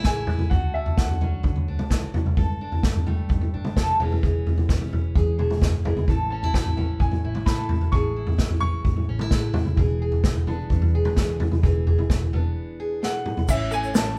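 Lightly reverberant and played live in one room, this anthemic, uplifting indie folk passage moves at 130 BPM in a straight 4/4 in A major, with an arrangement that builds as it goes. A roomy, unplugged drum kit sits up front, with bundle sticks on a punchy kick, medium-tuned snare, toms, hi-hat and dark cymbals. Beneath it, a fingerpicked steel-string acoustic guitar carries the accompaniment with a dusky tone and audible finger squeak, while a bowed double bass plays sul tasto in the background with an airy, intimate sound and light vibrato. A woody, open upright piano carries the melody in short, clear phrases over chords that drift from Amaj7 through Dmaj7, Gsus2, E6 and E7. After a break at 12.6 seconds and a drum fill at 13.0 seconds, the band lands on A at 13.5 seconds, where several parts join in the background: a shimmering, octave-doubled twelve-string guitar, a soft, flute-like tonewheel organ turning through a slow rotary speaker, plunky, twangy banjo arpeggios, and a grainy tube shaker.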